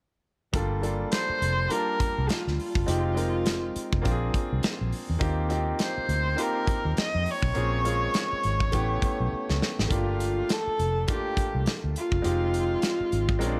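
An intimate, airy-bowed single viola carries the melody from 1.1 seconds, its nasal, vibrato-tinged tone sitting close and up front in this silky, cinematic slice of lush 1970s-style soul in G minor at 102 BPM with a gentle sixteenth-note swing. Beneath it, a brilliant concert grand piano with long sustain plays chords such as Gm7, Eb6 and A9, while a dark, round, foam-muted electric bass and a tight, mid-forward acoustic drum kit of kick, snare and hi-hat hold the groove. A drum fill at 9.3 seconds leads into a new section at 9.9 seconds, all set in a small room ambience.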